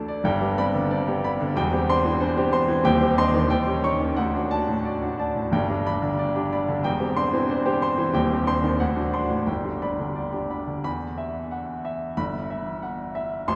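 Bathed in a long cathedral reverb and heard from deeper in the room, this heroic, brilliant excerpt from a classical virtuoso piano study presents a smooth, vintage grand piano alone, spanning Eb1 to Db6 at a rubato 91 BPM in 2/4 and G major, tuned to A4 = 438 Hz, with harmonies moving from G through C/E, Cm/Eb and Eb7 to D and back before turning toward E5 and Em/G at 10.9 seconds.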